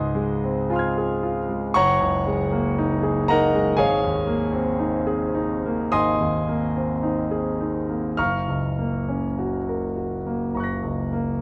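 A clear, natural-sounding concert grand piano sits up front with a deep bass, playing alone in an impressionist classical style with a nocturnal, wistful mood and a freely flowing rubato in 4/4. Its harmonies drift from Dbmaj9 through Gb69 and Abadd9 before settling on Gbmaj7 at 8.2 seconds. Light reverb and a worn, warbling cassette-tape character with wavering pitch give this short cut from a longer piece a faded, dreamlike feel.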